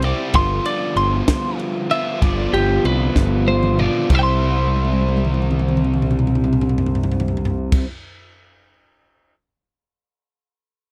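A double-tracked, overdriven electric guitar riff sits up front in this intricate, bright math rock and midwest emo excerpt at 64 BPM in 6/8 and C major, joined by clean, compressed twelve-string arpeggios, a growling picked bass with overdrive, and a crisp fusion kit with a high-tuned snare and punchy kick whose fills begin at 3.2 seconds and which plays on alone after the other parts stop near 7.9 seconds, the harmony moving from G7sus4 to C in a dry, close 1970s-style studio sound.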